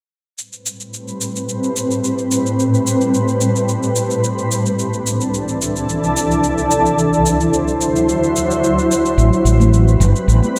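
A lush, moderate hall reverb with a digital sheen surrounds this short cut from a longer sunset chillout piece, set in A dorian at 109 BPM in a straight 4/4 with a wistful, warm mood. A gritty, overdriven cabasa with a compressed, sampler-style edge opens at 0.4 seconds, and a shimmering ambient pad follows at 1.1 seconds. The pad sits up front: ethereal and detuned, with an octave-up shimmer, a granular texture, chorus and a slow attack, as a filter sweep moves across it. Its sustained chords move from Am9 to C69 and D9 before returning to Am9. At 9.2 seconds a mellow fretless electric bass arrives, dark, round and close, and high-tuned congas with a thick-skinned, vintage tone add soft hand percussion in the background just after.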